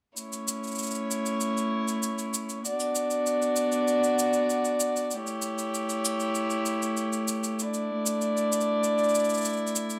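A dark, nasal string quartet with a gut-string, period-style tone carries this hopeful, pastoral folktronica excerpt at 97 BPM in A mixolydian. The quartet sits up front with one player per line, holding bowed chords through A, Bm, A7 and Dsus2, roughened by a vintage 12-bit sampler grit. A mid-forward cabasa with a rolled-off top enters alongside the strings and plays quietly beneath them throughout, and a moderate studio reverb with a half-second decay gives the whole a gentle sense of space.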